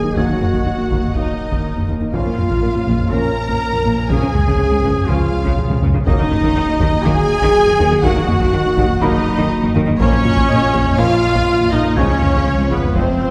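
Hard-stick taiko drums drive this vast, futuristic excerpt of hybrid orchestral and electronic film score at 122 BPM in 4/4, opening on an impact at 0.0 s and breaking into a fill from 5.6 to 6.1 s, while a vintage-toned duduk with delay carries the melody beside warm violins over intense second violins, focused violas, dark French horns, clear trombones, a warbling lo-fi pad with chorus, soft round pluck arpeggios, rich cellos, smooth double basses, a deep sub bass, a faint electronic sub drop and swell, and a muted, boxy upright piano that returns at 6.1 s, all moving through E-flat minor, B-flat minor and D-flat chords within a distant, reverberant scoring-stage space.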